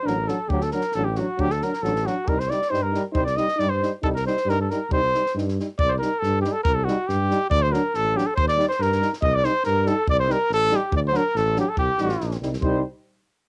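A mellow, lightly vibrato trumpet carries the melody up front from the start over a very quiet, clear flugelhorn second line and a dark, distant French horn with soft attack, opening this restless, bittersweet excerpt of Balkan brass-band folk in C dorian sharp4 at 139 BPM in 2/4, where a clear euphonium and an up-front, mellow tuba bass join with a dry, compact cocktail drum kit of tight kick and high-tuned snare, the flugelhorn drops out between 5.3 and 8.3 seconds, the tempo gradually speeds up, and cassette-tape grit on the trumpet, horn, euphonium and drums gives the lightly reverberant home recording its homespun character.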